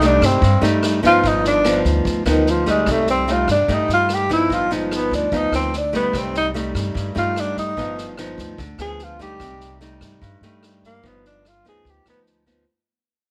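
Lightly reverberant and intimate, this smooth bossa nova excerpt at 147 BPM in C dorian fades out across its 12.7 seconds as a breathy, mellow tenor saxophone solos with light vibrato and scooped notes over fingerpicked nylon-string guitar, woody pizzicato upright bass and a drum kit sitting low in the mix with punchy kick, rim click and medium-tuned snare, while the harmony alternates between Cm6 and G7b13.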